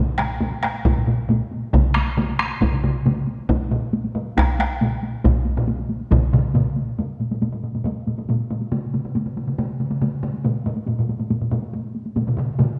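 Powerful and driving, this clip from a longer traditional Japanese taiko drum piece moves in a straight 4/4 at 138 BPM and speeds up throughout, as four taiko ensemble parts stack up within the first 1.7 seconds: one struck with heavy sticks sounds close and dry, another heavy-stick part sits up front with a compressed, saturated edge, a third heavy-stick part in a live room also stands forward but drops out at 6.2 seconds, and a hard-stick part plays dry and close, all within a wet concert hall reverb as the music moves into a new section at 7.0 seconds.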